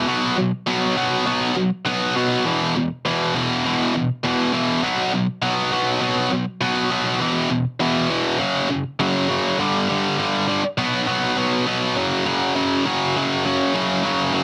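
A tight, distorted electric guitar plays alone from the first moment, its bright, picked tone double-tracked and placed up front as it drives a rebellious, energetic punk figure at 202 BPM in straight 4/4. Power chords move between B5, E5 and F#5 before shifting at 9.6 seconds to G5, B5 and F#5, all within a low-to-middle range. Light reverb and a heavily compressed, radio-like sound give this short cut from a longer piece a squeezed, punchy edge.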